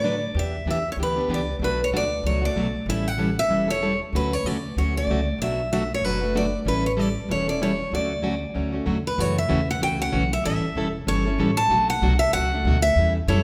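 From the first moment, a bright, fresh-stringed parlour guitar picks a lively, playful melody over the boxy picked accompaniment of a plugged-in steel-string acoustic guitar and a woody, thumpy pizzicato upright bass on gut strings, together forming an acoustic string swing in the jazz manouche style at 190 BPM in 4/4 that moves through Em7, Bm7, A7 and Dmaj7 before turning to F#m7 in a new section at 9.2 seconds, with both guitars up front in a wet recital hall reverb, in this short cut from a longer piece.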